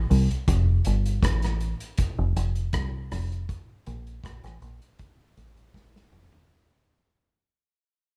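A deep, fingered electric bass sits up front in this short dub reggae excerpt, its dark, round, foam-muted tone moving between F1 and C2 before it stops at 6.3 seconds. A vintage acoustic drum kit, also up front, plays hi-hat, tight kick, medium-tuned snare, rim click and toms, its sound warm with a rolled-off top. The tempo is a relaxed 80 BPM in a straight 4/4, giving a hazy, laid-back mood. A drum fill arrives at 5.7 seconds and carries the passage to its close, while a fade-out runs across the whole clip. The recording sits in a small room with little reverb, keeping both parts close and dry.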